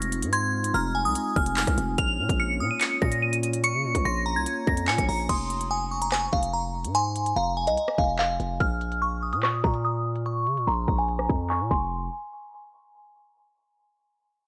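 A crystalline FM synth bell carries the melody in this menacing, ominous drill cut. Its fast-attack, decaying notes are coated in chorus and delay and ring high over a half-time groove at 145 BPM in F minor. A second, brighter bell line with a long release joins at 0.3 seconds, also treated with chorus and delay. Beneath them, an aggressive, heavy 808-style bass pairs a distorted sine tone with a noise layer and sits up front, while an electronic drill kit of hard-clipped kick, crisp hi-hat, handclaps, rim click and crash cymbal drives the beat. A pure, ethereal glass harmonica holds slow-attack chords with a gentle beating quality until 5.3 seconds, when a new section arrives along with a filter sweep. The harmony moves between Fm7 and Bbm before the chords fall away at 11.9 seconds, all set in light digital reverb with a low-pass filter.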